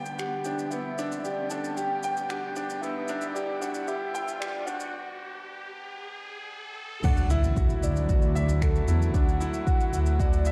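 A velvety sawtooth synth lead with chorus and tremolo carries the melody over a bright grand piano riff with tape echo, a nasal, gut-string quartet holding filtered, pumping chords, and a warmly bowed double bass section with tube saturation. Beneath them, a soft brush kit with crash, finger snaps and shaker and a background electronic riser build through the opening of this hopeful, luminous piano-and-strings electronica at 114 BPM in D major. A break comes at 4.9 s, and at 7.0 s the drop lands with an impact and a deep, layered electronic kick as the harmony moves from G to Dadd9, all set in a moderate recital-hall reverb within a dark production.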